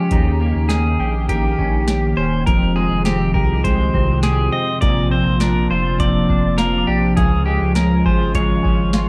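Melancholic and haunting, this short dream pop excerpt opens with a twangy pedal steel guitar melody carried by digital delay over a smooth, detuned analog pad with chorus and bright arpeggios from a chorused twelve-string electric guitar, while a thick, saturated sub bass and a booming analog drum machine with a deep kick, crisp snare and metallic hats settle in beneath, a very quiet, bell-like, slightly out-of-tune celesta joins at 2.5 seconds, and the chords move from Eb7 through Fmadd9 and Bbadd9 to Db in a dark, reverberant mix.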